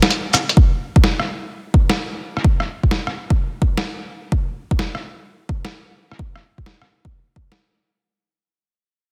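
A dense, heavily limited modern master with light reverb carries this ghostly, nocturnal future garage fragment at 128 BPM in 4/4, swung at 66% on the 16ths, where a muffled, pitched-down, tape-tinged sampler-style kit of cabasa, hi-hat, rim click and medium-tuned snare sits up front from the start, joined at 0.6 s by a deep, layered, overdriven electronic kick re-recorded in a large room, as the recording fades out from 0.6 s to 8.1 s.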